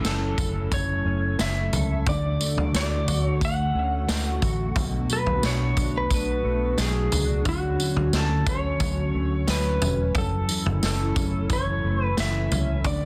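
Dream pop in F# minor at 89 BPM in a straight 4/4, this short cut from a longer piece has a haunting, hazy mood. A clean lap steel guitar carries the melody between F#4 and F#5, its slide tone shaped by volume swells and trailed by delay. Beneath it, a mellow electric guitar plays dark, compressed arpeggios set back in the background with ensemble chorus and delay, while a hollow, flute-like pad holds slow-attack chords treated with chorus. A vintage muted fingered bass gives a round, foam-muted low end, and a vintage acoustic drum kit sits up front with a punchy kick, medium-tuned snare, tambourine and toms under a rolled-off top. The harmony moves from F#m7 through Dmaj7 and Bm7 back to Dmaj7, returning to F#m7 at 10.2 seconds, all within a small room ambience, light reverb and a dense, heavily limited modern master.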